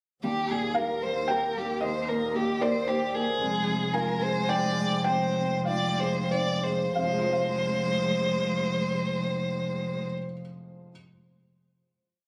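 Melancholic and reflective, this short neoclassical piece for piano and strings moves in a rubato triple metre, slowing from 2.6 s until the theme gives way to a held final chord at 7.0 s. A felt-muted upright piano, mellow and intimate with audible action noise, spreads broken chords beneath an up-front violin whose melody carries vibrato, portamento and a soft attack, while a focused cello repeats notes in the background and a distant bowed double bass sustains a low drone. Captured on a phone in the room, the recording carries club reverb and compression.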